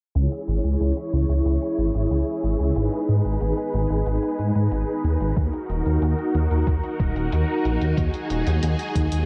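Bathed in light digital reverb and a low-pass filter, this driving, nocturnal synthwave fragment from a longer piece sets a lush, vintage string machine with ensemble chorus and sidechain pumping over a deep, rumbling detuned saw bass that carries a filter sweep throughout, while a tape-warm electronic hi-hat ticks in the background and a thumpy sampler-style kick drum enters at 5.4 seconds.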